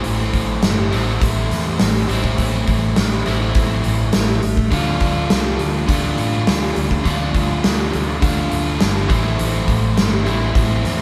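Classic rock in A minor at 103 BPM, this brooding, driving cut from a longer piece moves from Am to Dm at 4.7 seconds and back to Am at 9.1 seconds. A dark, overdriven electric guitar, picked, double-tracked and compressed, sits up front with its riff, while a warm, amped fingered electric bass holds the low end. A huge arena drum kit with a punchy kick, medium-tuned snare, hi-hat and a hall sound drives the band, which plays live in one room with light reverb.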